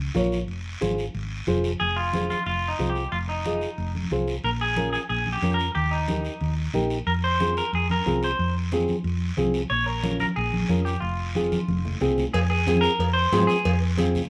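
The recording sits in a light reverb, with the bass and both guitars up front and the congas set back in the background. This is a driving, fiery cumbia excerpt in F minor at 182 BPM in a straight 4/4, moving through Fm, Bbm and Eb. A round, dark, hollow-body short-scale electric bass, fingered and amped, anchors the low end. Beside it, a full-bodied nylon-string guitar, thumb-plucked with a deep classical tone, carries the accompaniment. Brilliant, hard-handed congas with a thin skin and a raspy, band-limited guiro keep the percussion going from the start. At 1.8 seconds a clean, twangy electric guitar takes the fingered melody, bathed in spring reverb; a drum fill arrives at 11.3 seconds, and ringing metal-shell cowbell and timbales join at 12.3 seconds for the final stretch.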